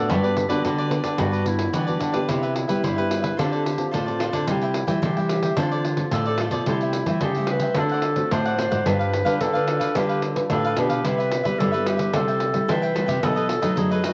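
A straight four-beat groove from a jingly, vintage-sounding pandeiro, entering at 0.1 s, drives this sunny, playful blend of samba and choro, a 14.1-second cut from a longer piece. A thumb-plucked nylon-string guitar holds down the bass line and sits slightly forward in the mix. A second, full-bodied nylon-string guitar adds fingerpicked classical-style accompaniment, and a crisp, picked cavaquinho fills out the harmony higher up. A warm clarinet in a classical style carries a second line in its middle register throughout. The harmony opens on Gmaj7, then from 2.3 s moves through a richer passage of seventh chords, landing on D7 and G7 before closing on B7, all set in light studio reverb with a soft, rounded top end.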